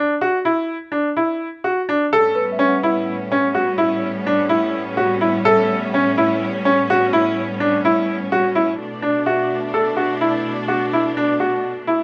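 Contemporary chamber music in 7/4 at 126 BPM in B minor, pensive and hypnotic, where a bright, worn grand piano plays up-front arpeggios with short sustain, a rich, smooth symphonic string section with light vibrato enters at 2.1 seconds with distant bowed sustained chords, and a delicate, bell-like celesta adds a dry, close-miked background texture from 2.4 to 10.3 seconds, under light reverb as the harmony moves from a rootless Bmadd11 through A9 to Bm7 in this excerpt from a longer piece.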